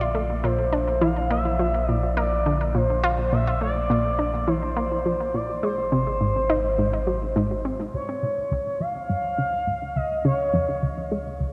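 A bright, up-front analog pluck, a smooth portamento lead and a deep sine sub bass all sound together from the opening moment of this ambient, sequencer-driven space music, which has a luminous, expansive mood and a straight, steady pulse. The pluck carries the riff with a round, nasal tone built from sawtooth, square, sine and a noise layer, wave-folded and shaped by a snappy filter with a fast attack and short decay, then coloured by chorus and delay. Above it, the lead sings the melody in a mellow, expressive voice with soft attack, vibrato and gliding portamento, its sawtooth tone touched by a moving notch, subtle chorus, cassette-tape character and delay. The sub bass sits lower in the mix, round and sustained. The harmony moves from Bb to Ab7 at 5.6 seconds and settles on Db at 7.9 seconds, where a filter sweep on the arpeggiated synth sound opens a new section. A wet cathedral reverb places everything in a vast, echoing space, and this excerpt is cut from a longer piece.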